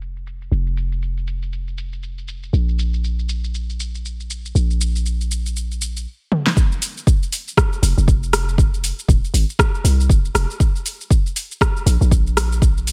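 Afro house at 119 BPM with a swung 16th feel and an earthy mood, cut from a longer piece, where a boomy, sine-like 808-style bass with sidechain pumping and a deep house kit of metallic hats, fat snare, rim click, shaker and toms run through a filter sweep and a drum fill at 6.3 seconds before a deep, tape-warm electronic kick lands up front for the drop at 6.6 seconds, all set in a low-pass-filtered digital ambience.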